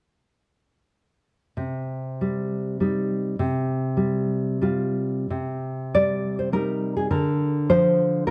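Romantic solo classical guitar music in 3/4, played with a flexible rubato feel that gives it an intimate, wistful mood. The nylon-string guitar sits up front, its dark, full-bodied tone sounding thumb-plucked and deep as it moves through C minor harmonies from 1.6 seconds to 8.3 seconds, shifting to a new section at 5.3 seconds. Close, detailed microphones capture the instrument inside a moderate recital hall reverb in this short cut from a longer piece.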